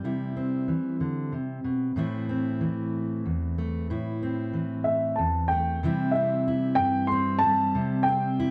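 A 6/8 pulse at 62 BPM, counted in dotted quarters with a straight feel, carries this short hopeful folk fragment in C major, cut from a longer piece. A fingerpicked steel-string acoustic guitar opens the accompaniment at 0.0 seconds, its fresh strings giving a full-bodied jumbo tone with audible finger squeak as the harmony moves from C to A minor and back. At 4.8 seconds a dark upright piano enters with the melody high in its register, sounding mellow, woody and vintage. From 5.8 seconds the music gathers into a build-up as the chord returns to C, giving the moment an uplifting lift. Both instruments sit up front in a dry, close 1970s-style studio sound touched by light reverb.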